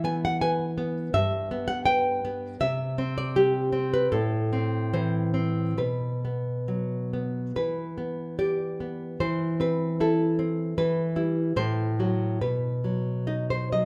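A moderate recital-hall reverb surrounds this short recording, giving a solo nylon-string guitar an intimate, melancholic sound. This is a romantic classical guitar piece, cut from a longer work, in a 2/4 metre with a flexible rubato feel. The fingerpicked guitar sits up front and sounds warm, reaching from G2 up to G#5, and finger squeaks on the strings can be heard. The opening section moves through several chord changes, including a turn to A minor, and a new section begins at 7.6 seconds. That second part passes through a diminished colour before coming to rest on a B chord at 12.4 seconds, and the recording ends at 13.9 seconds.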